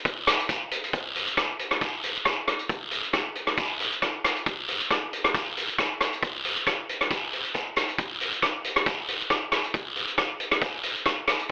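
A gritty, saturated vintage drum kit with a rolled-off top sits up front with a tight kick, hi-hat and rim click, alongside a raspy, distant guiro across this festive, carefree calypso excerpt with a lightly swung feel, heard through a rough home-demo mix with a telephone-like sound and modest studio reverb.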